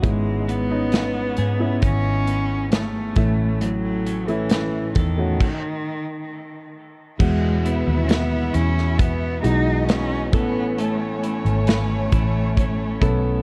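Pop ballad, hopeful and heartfelt, where a nasal, bowed solo cello carries the melody up front over woody upright piano, a round foam-muted electric bass, a punchy small-room drum kit and a clean twelve-string electric guitar with tremolo and dub echo in the background; after a full stop at 5.4 seconds, an expressive violin section enters with a second line at 7.2 seconds, all within an echo-heavy cassette-tape mix.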